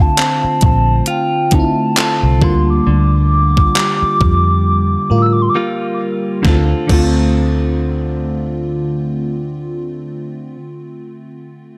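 Contemporary R&B in D minor at 67 BPM with a swung, moody and longing feel, where a hollow, woody clarinet-like synth lead with chorus and digital delay sings a short melody over a lush, dreamy FM electric piano with a soft pad layer and phaser, clean direct-recorded guitar arpeggios, a round, foam-muted fingered bass and an up-front, overdriven 80s drum machine with a thumpy kick and gated reverb snare, moving from Dm7 to Gm7/D before a break at 5.5 seconds leads into a second section at 6.4 seconds, in this fragment cut from a longer piece.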